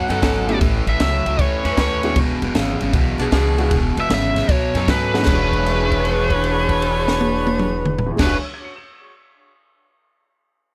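A biting, overdriven lead guitar opens this laid-back, soulful electric blues shuffle alongside a crunchy riff guitar and a woody, thumpy, gut-strung upright bass, soon joined by tight, close-miked saxophone section stabs with analog delay, a dry cocktail drum kit with a high-tuned snare and punchy kick, and a baby grand piano from 0.5 seconds sitting in the background, as a drum fill at 5.1 seconds leads into a held note from 5.3 seconds, all set in a small room.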